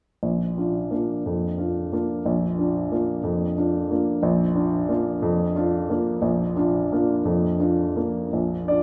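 A cathedral-like reverb with a 7.0-second decay surrounds this short classical piano waltz, recorded in a church or concert hall and cut from a longer piece. A solo upright piano with a woody, polished tone and long sustain sits up front, playing from 0.2 to 8.8 seconds in Bb major, its range spanning Bb1 to D5. The 3/4 waltz moves with rubato at 156-192 BPM, giving the music a graceful, sparkling mood.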